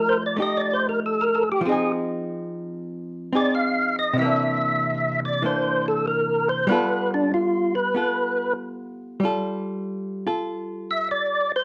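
A fat, lightly overdriven tonewheel organ with key click, third-harmonic percussion, chorus vibrato and a slow rotary speaker plays the up-front solo melody throughout this 11.6-second fragment of swinging, soulful jazz at 95 BPM on swung eighths, while a clean, compressed, picked hollow-body archtop guitar accompanies through F9, Fm7, C9 and G9 chords, all set in a dark production with moderate studio reverb.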